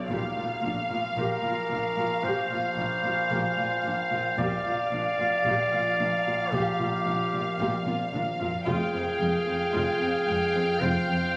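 A slow, straight 4/4 pulse at 56 BPM underpins this mysterious, eerie suspense cue, cut from a longer film score. Muted, con sordino string sections carry the harmony in veiled, bowed tones: one violin section sings the melody with lush vibrato while a second, more distant violin section holds a supporting line, and violas, cellos and double basses sit in the background. Beneath them an overtone-sweeping drone of sawtooth and sine, with chorus and its own reverb, sustains a resonant low bed, and a very quiet taiko ensemble struck with hard sticks adds a faint pulse. At 1.2 seconds a solo clarinet, up front yet roomy, enters with a classical-style second line. The taiko plays a fill at 7.6 seconds, and at 8.7 seconds the harmony moves from A#6 to Fmadd9 as a high, close violin texture joins in the background. The whole recording has a moderate concert-hall reverb, added studio reverb and compression, and was captured on a phone in the room.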